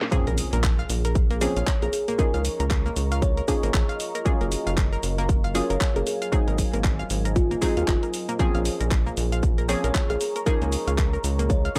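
A punchy, up-front electronic kick drives this moody, hypnotic deep house excerpt at 116 BPM in Bb minor, with a 16th-note swing giving it a loose sway. Beside it sits a rubbery, nasal square bass, bouncy and hollow with a fast attack and sidechain pumping, while a house kit of handclaps, hi-hat, shaker and a cracking snare is low-pass filtered, and both kit and kick were re-recorded in a small room. Muted, deep dub chord stabs with analog chorus and sidechain pumping move through Bbm9, Db69, Gbmaj9 and Ab7, and a bright, round analog pluck plays chorused arpeggios with tape echo and pumping. A woody kalimba with a ringing thumb-plucked tone carries the melody from 1.4 seconds, over a detuned, dark ambient pad sitting in the background with slow attack, built-in reverb and chorus. A very quiet electronic swell and impact opens the drop, ending by 2.2 seconds, and the whole mix is dry and gritty, with transformer saturation from hardware.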